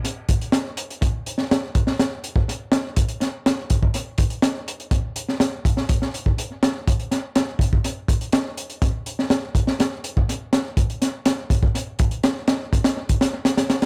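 Energetic and gritty, this breakbeat fragment, cut from a longer piece, runs at 123 BPM in a straight 4/4 feel, carried entirely by a crunchy drum kit of kick, snare and hi-hat that plays through the full 13.9 seconds. The kit sounds like an acoustic set in a small room, saturated and dark with a rolled-off top, pairing a punchy kick with a high-tuned snare and sitting up front in the mix. Analog delay on the drums and a touch of light reverb give the whole track an echo-heavy character.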